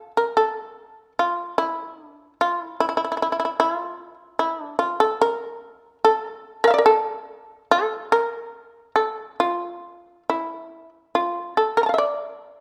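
Rubato and unhurried, this short excerpt of Japanese traditional chamber music features a solo shamisen, plucked with a plectrum, sitting up front with a buzzing, percussive fretless tone in light reverb, spanning E4 to Bb5 in a solitary, meditative mood.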